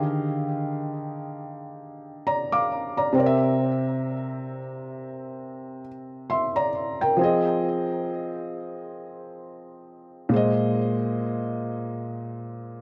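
A felt-muted upright piano plays alone in free time, its soft, intimate tone sitting up front with a touch of delay across this tender, romantic R&B fragment of about 12.8 seconds in Eb major. The harmony moves from Ebmaj9 to C7 at 3.2 seconds, then Fm7 and finally Bb9sus4 at 10.3 seconds, spanning Bb2 to D6. A light small-room reverb and a dark, warm production give the piece a hushed, close feel.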